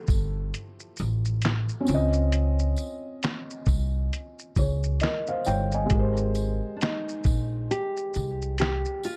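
Dreamy and cosy, this lo-fi hip hop excerpt swings gently as a soft, felt-muted upright piano with audible action noise, cassette tape colouring and a low-pass filter drifts through Fmaj9, Dbmaj9 and Abmaj9 over a woody pizzicato upright bass and a muffled, pitched-down sampler-style kit of thumpy kick, fat snare, hi-hat, shaker and handclaps, with a faint, jingly tambourine close by, until a fingerpicked nylon-string guitar melody, also low-pass filtered, enters at 6.8 s, all within a dark, warm production with little reverb.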